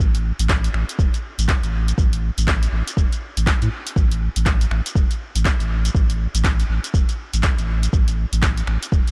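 Afro house at 121 BPM with a swung sixteenth feel, this hypnotic, driving nine-second cut from a longer piece pairs a deep electronic kick with a layered deep house kit of finger snaps, handclaps, hi-hat and shaker, both re-recorded in a small room, under a round, sine-like sub bass that sits up front with sidechain pumping, all in a dry mix with little reverb.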